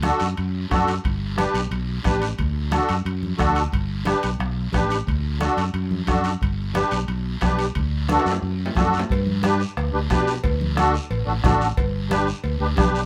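A straight 4/4 cumbia groove at 179 BPM drives this joyful, danceable excerpt in G major, as a soft-beater bombo, raspy guiro, low-tuned thick-skinned congas and saturated, ringing timbales and cowbell in the background support an up-front growly fretless electric bass and a reedy, shimmering musette accordion with a vintage, band-limited tone, the harmony alternating between D and G under light reverb until a drum fill at 8.1 s leads into a new section at 9.1 s.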